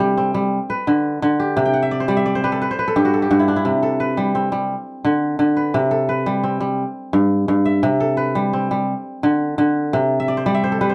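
Set in 12/8 at 115 BPM in dotted quarters with a straight feel, this flowing, joyful West African traditional piece is a short cut from a longer performance in C Lydian, tuned to A4 = 444 Hz. A lone acoustic kora carries everything, fingerpicked up front across a range from G2 to G5 with a bright, ringing, crisp tone, adding fills from 1.6 seconds and again from 10.2 seconds. A new section begins at 3.6 seconds, and the dark production with light reverb gives the plucked strings a soft sense of space.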